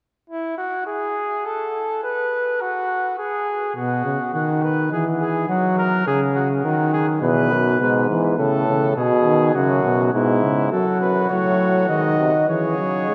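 A warm flugelhorn with light vibrato opens this elegant, joyful classical canzona for brass ensemble, playing the second line alone in a distant, roomy sound. Its voice sits in a triple metre with a straight feel, and the writing is imitative, with each new part joining the texture in turn. A trombone with a soft attack and a close-miked presence enters at 3.8 seconds as accompaniment, and a clear euphonium with a vintage colour adds the bass line from 7.2 seconds. At 10.7 seconds a mellow trumpet with light vibrato takes up the melody as the harmony moves into a new section. A wet cathedral reverb surrounds the ensemble with a vast, echoing space, and the recording is cut from a longer piece.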